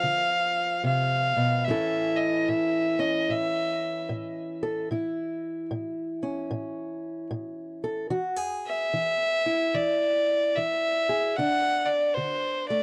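A dry, close recording with a light reverb and a 1970s studio feel carries this swaggering, gritty acoustic country blues fragment, where a dark, woody fiddle bowed by one player with light vibrato and tape echo sits up front alongside a bright, fresh-stringed parlour steel-string guitar, also up front, fingerpicked in accompaniment, both running the full 12.8 seconds through a swung groove that moves from Dm7 to A, E and D5.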